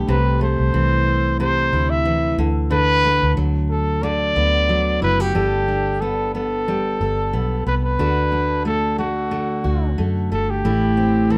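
Acoustic pop at 91 BPM with a gentle 16th-note swing, this reflective, wistful fragment of a longer piece sets a breathy, whispered trumpet melody with light vibrato up front over a full-bodied jumbo steel-string acoustic guitar, picked with audible finger squeak, and a dark, round, foam-muted vintage electric bass, all in light reverb as the chords move from C6 through Bm7/D and Gadd9 to D and Am.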